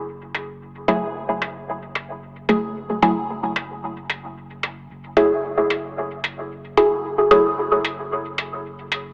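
A swung 4/4 pulse at 112 BPM drives this hazy, deep dub techno fragment in F# minor: a muffled, overdriven, pitched-down hi-hat with a low-pass filter and small room ambience ticks from 0.3 s, a clean, smooth pure sine sub bass holds F#1 underneath, and a muted, detuned sawtooth-and-square chord stab with a quick filter pluck, phaser and dub echo sits up front from 0.9 s to 7.4 s, the whole mix set in a lush hall reverb with a small-speaker character.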